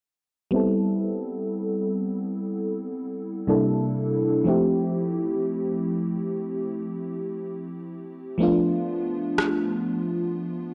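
An FM electric piano layered with a soft pad carries this moody, longing piece of contemporary R&B, sounding lush and dreamy with a detuned shimmer, a fast attack and decaying notes, set up front from 0.5 s to 10.7 s. Chorus and a low-pass filter shape its tone, and a filter sweep runs across the whole passage, with a noise layer beneath the triangle-like body of the sound. In A minor at a slow 61 BPM in straight 4/4, tuned to A4 = 437 Hz, the harmony moves from Am9 to C13, Fmaj9 and Bm7b5 within the range C3 to A4. A tape-warm electronic rim click, re-recorded in a small room and placed up front, sounds briefly at 9.4 s. A moderate hall reverb with a 2.4-second decay surrounds the sound, and the passage is cut from a longer piece.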